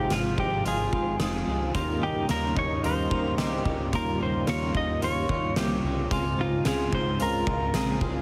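Dreamy and blissful, this dream pop fragment, cut from a longer piece, moves at 110 BPM in a straight 4/4 over Ab6, Eb7 and Dbmaj7 chords. A dark, slightly broken-up electric guitar carries the melody through tape echo, while a second broken-up guitar plays scooped, compressed arpeggios with analog chorus and tape echo, and a clean guitar with tremolo and ensemble chorus sits in the background beside a lush, detuned unison pad holding sustained chords. A thick sawtooth analog bass with a filter sweep and an oversized, low-tuned acoustic kit with a fat snare, punchy kick, hi-hat and tambourine anchor everything, a very quiet inharmonic FM chime rings in at 3.4 seconds, and the whole mix has light small-room reverb and a heavily compressed radio sound.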